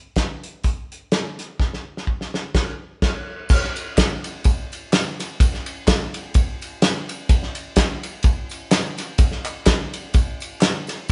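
A lightly swung 4/4 pulse at 126 BPM drives this short gospel excerpt, soulful yet solemn in mood. An acoustic soul drum kit sits up front, mid-forward with dark cymbals, a fat snare and a tight kick, its top end rolled off, covering crash, hi-hat, ride, snare and kick from the opening moment. A drum fill runs from 1.6 to 3.5 seconds, with a band accent landing over its second half. At 3.5 seconds the next section begins and tambourine and handclaps join, a tube shaker and group handclap heard close and dry but set well in the background. The band plays live together in a moderate stone room whose reverb lends a solemn air, and the recording holds a soft, dusky top that never turns bright.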